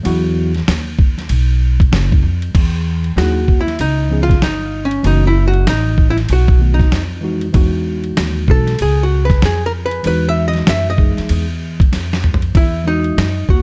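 A dark, dry production frames this relaxed jazz-hop excerpt in E major at 96 BPM with a swung feel, where a gritty, pitched-down boom bap sampler kit with a thumpy kick sits up front beside a woody gut-string upright bass, a worn, slightly out-of-tune tine electric piano supplies mellow chords, and a clean, picked hollow-body archtop guitar with analog delay carries the melody and takes a solo from 2.5 to 12.5 seconds, with a drum fill arriving at 11.9 seconds during its final stretch.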